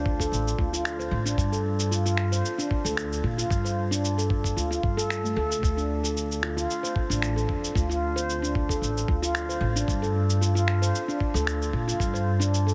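Organic downtempo with a meditative, earthy mood, cut from a longer piece and moving at an unhurried, lightly swung pace in four. A woody, pizzicato upright bass anchors the low end from the opening second, its steel strings giving a firm pluck while sidechain pumping makes it breathe against the beat. Ringing handpan arpeggios, struck with the fingertips and set up front in a boxy small room, carry the harmony through a slow sway between Dm and Gsus2, trailed by tape echo. A thumpy, gritty electronic kick and sampler-style cabasa and finger snaps, all re-recorded in a small room for a tape-warm, compressed texture, keep the groove beneath, with the cabasa and snaps sitting lower in the balance. Light reverb and a heavily compressed, radio-like sound with the top end rolled off give the whole recording a dusty, intimate character.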